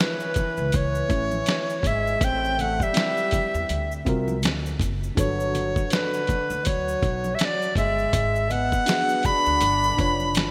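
A mellow, smoky jazz-hop excerpt at 81 BPM with a swung sixteenth-note feel, built on jazzy extended chords such as F#m9, Gmaj7 and G7#11. Up front, a bright, reedy tenor recorder carries the melody with vibrato and a chiffy tongued attack, while a breathy, whispered trombone plays a second line beneath it, both trailed by delay, over a gritty, overdriven sampler-style drum kit with a thumpy kick, fat snare and gated reverb. Maracas and congas sit in the background from 0.2 seconds, a woody, growly pizzicato upright bass arrives at 0.6 seconds, and a worn, slightly out-of-tune tine electric piano joins at 1.1 seconds, all set in a lush hall reverb with a crisp 1980s-style digital sheen.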